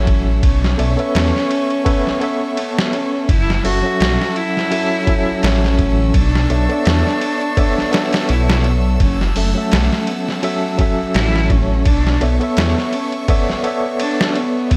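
Hypnotic and melancholic, this trip hop excerpt moves at 84 BPM in 4/4 with a light sixteenth-note swing, cut from a longer piece. A single bowed cello carries the melody in a dark, woody voice with vibrato, trailed by tape echo, while a bright, clean tine electric piano with tremolo plays the accompaniment. A smooth, even violin section holds sustained chords in the background, and a deep, rumbling detuned saw bass sits up front with a beating, sustained tone. The sampler-style drum kit enters at 0.1 seconds, pitched down, muffled and tape-warm, with a thumpy kick, medium-tuned snare, hi-hat and ride cymbal sounding as if re-recorded in a small room. The harmony cycles from B9sus4 through F#m7 and Bm11, and the mix stays dry, with little reverb.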